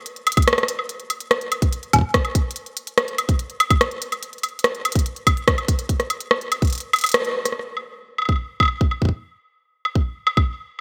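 Melancholic and cerebral, this 144 BPM IDM fragment in straight 4/4 opens with an up-front, tape-warm organic electronic drum kit of smooth hi-hats, rim clicks and woodblock touched by digital delay, joined at 0.4 s by a tight, up-front electronic kick that drops out from 6.7 s through a band accent at 7.1 s before the piece moves into a new section, all set in a lush hall reverb with a 2.0 s decay and a digital sense of space.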